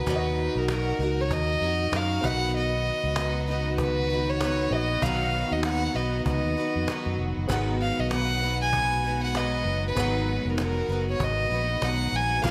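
Carefree and sunny, this lightly swung acoustic pop passage, cut from a longer piece, is led by an intimate, up-front solo violin bowed sul tasto with a soft attack, light vibrato and a touch of digital delay. A bright, double-tracked parlour steel-string guitar and a very quiet, woody upright piano carry the harmony over D#m, B and G#m7, while a lush studio string section holds sustained chords in the background. From 0.1 s a round, punchy fingered electric bass sits up front and a cajon with faint snares sits back in a live room, the whole mix set in light studio reverb with a 1980s-style digital production.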